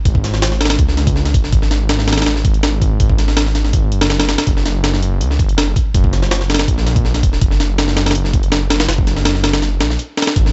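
The recording is dry and gritty, with a dark, rolled-off top end that gives it a rough hardware character, and this short section is cut from a longer piece. It's a frenetic, dark slice of drum and bass with a jungle edge, running at 163 BPM in a straight 4/4. A sampler-style breakbeat kit of kick, snare and hi-hat sits up front, compressed and thumpy, with a high-tuned snare and a touch of small-room ambience around it. Alongside it, also up front, a detuned saw bass growls low and sustained, thick and beating with a menacing, tube-saturated edge that still keeps a mellow core. Both parts play together from 0.1 to 10.5 seconds, driving the whole passage as one tight, ominous pulse.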